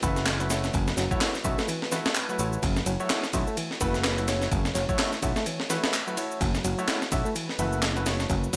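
A gritty, pitched-up breakbeat kit with a thumpy kick and high-tuned snare drives this energetic, funky breakbeat excerpt at 127 BPM in F# minor, swinging its 16ths and layered with a house kit of handclaps, ride and shaker while a growly, up-front picked bass holds the low end. A barky, lightly overdriven reed electric piano riffs in the background with fast tremolo and tape echo, a clear grand piano adds polished stabs with audible action noise, and a deep, dark pad sustains an F#m7 chord very quietly underneath. Between 3.8 and 5.0 seconds a sparkling, bell-like FM electric piano slips in a brief melody colored by chorus, AM-radio tone and 12-bit sampler grit.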